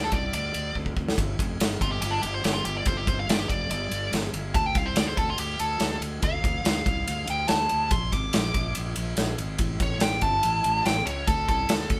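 Recorded as a band playing live in one room, this twelve-second cut from a longer piece carries a moderate studio reverb that gives it a close, heavy presence. It sits between blues rock power trio and southern rock, with a brooding mood, a straight 4/4 feel at 143 BPM and a key of D minor. Up front, a nasal lead guitar with a parked wah takes a picked, overdriven solo across the whole passage, ranging from D4 to D6. Beneath it, a fingered electric bass growls with fuzz and overdrive, played direct and amped in a low register. A big acoustic rock drum kit comes in at 0.1 seconds, with a punchy kick, a medium-tuned snare and bright ride cymbal, and it plays a fill between 0.8 and 1.2 seconds. The harmony moves from D7(no3) through G5, Dm, Bb7 and A7 before settling on D5.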